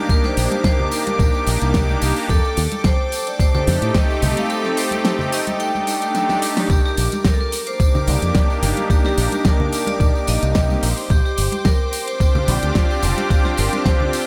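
Nu-disco at 109 BPM with a cosmic, sensual mood in C dorian, where a bright, ringing vibraphone melody floats over a warbling, detuned analog pad, distant bowed strings with sidechain pumping, a punchy envelope-filtered fingered bass, a gritty, thumpy up-front electronic kick, an overdriven pop kit with a fat snare and metallic hats, and soft-handed tambourine and congas, all set in a dreamy hall-reverb mix, with the kick dropping out from 4.5 to 6.7 seconds around a drum fill before returning.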